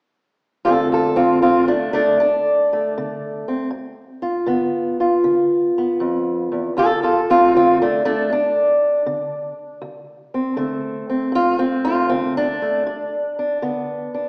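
A gritty, rollicking excerpt of acoustic country blues opens with a dark, boxy fingerpicked parlour steel-string guitar playing solo and up front in a swung 4/4, moving from D5 to G7 and back before landing on G at 12.8 seconds, all bathed in the wet reverb of a recital hall with a small-speaker sound.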